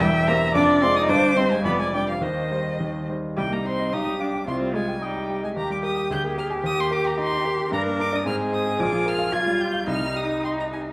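A distant, richly vibrato violin carries the melody high above this graceful, spirited excerpt of a quick classical-period piano quartet movement in C minor at 110 BPM in 2/4 with a rubato feel, as an expressive cello sings the second line with soft attacks and portamento, a focused viola fills in the accompaniment, and an intimate, up-front grand piano with audible action noise ranges from deep bass to high treble, all set in a moderate recital hall reverb.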